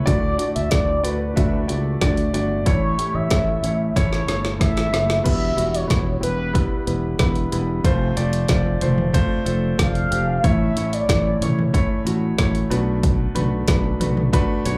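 An upright piano opens this warm, hopeful piano-driven pop fragment at 93 BPM, its natural, up-front sound carrying a slapback echo. It is joined almost at once by a growly fretless electric bass and a deep house drum kit with a punchy kick, woody snare, dark hats, crash and toms, while a round, horn-like synth lead with a soft attack, vibrato, chorus, phaser, slapback and tape echo carries the melody until 12.1 s. A drum fill from 4.0 s leads into a new passage at 5.3 s as the chords move from D through A, Em and F to Bm7, all heard as a live gig through a club PA with light reverb.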